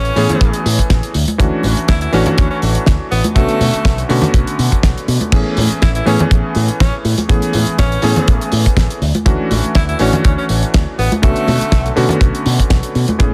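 Through a heavily compressed, radio-like sound with light reverb, this sunny, groovy nu-disco excerpt at 122 BPM sets an edgy, forceful tenor saxophone melody with vibrato and scooped notes, which drops out at 11.9 s, over a vintage electric grand piano with a clangy low end and short sustain, a bright fingered electric bass through an envelope filter and tube saturation, a damped 70s drum kit with a fat snare and dark cymbals, ringing background congas and a tight, up-front kick, all moving through Amaj7, Dmaj7 and Bm7 chords.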